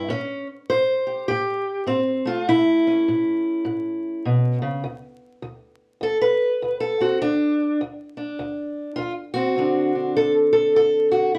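A swung 4/4 groove at 101 BPM drives this rollicking, gritty piece of acoustic country blues in D mixolydian, cut from a longer performance. A lone fingerpicked steel-string parlour guitar carries everything, sitting up front with a dark, boxy tone as it moves from A7 to D7 across a range from D2 to C5, with a brief new section arriving at 9.6 seconds. Light reverb and vinyl crackle give the production a dark, warm character.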